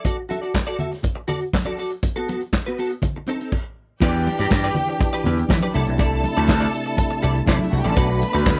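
A dry, close 1970s-style studio sound with barely any reverb frames this sultry, danceable disco excerpt, cut from a longer piece. It opens on a vintage acoustic drum kit, punchy in the kick, with dark cymbals, handclaps, hi-hat and snare sitting up front, while a clean, compressed semi-hollow guitar plays picked accompaniment through an ensemble chorus and hard-handed congas thump in the background. After a stop at 3.5 seconds, the groove returns at 4.0 seconds with a fuller band. A gritty, overdriven slap bass, bright and amped, leads the low end. Above it, a lush, bowed string section with focused vibrato carries a second line through tape echo, and a fat, percussive tonewheel organ with key click and a slow rotary speaker holds sustained chords over a minor-leaning progression.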